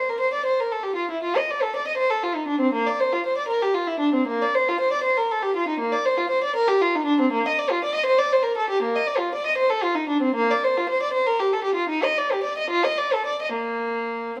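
A moderate stone-room reverb surrounds this brief cut from a longer piece, with a faint mains hum beneath it. A single bowed violin plays alone for the full 14.4 seconds, its period-style gut-string tone dark and reedy, in a flowing, serene baroque-style suite movement. The 12/8 pulse bends freely with rubato, giving the uneven beats a drifting sway.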